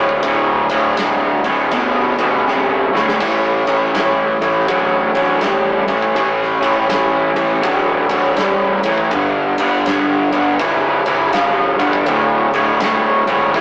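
A raw, double-tracked garage guitar opens this gritty, smoky slice of blues rock and southern rock, its overdriven, lo-fi riff sitting up front and low in its register over a swung 4/4 groove. Beneath it, a fuzz picked electric bass growls with a bright, overdriven edge, tucked into the background. An acoustic arena drum kit joins almost at once, with a punchy kick, a medium-tuned snare, bright crash and ride cymbals, and a pumping hall room, adding a fill from 2.5 to 3.2 seconds. The riff moves through D5, A5 and G5 power chords before returning to D5 at 12.1 seconds. The whole take has the rough feel of a rehearsal room, with saturated, AM-radio colouring and a short, wet studio reverb, and it is cut from a longer piece.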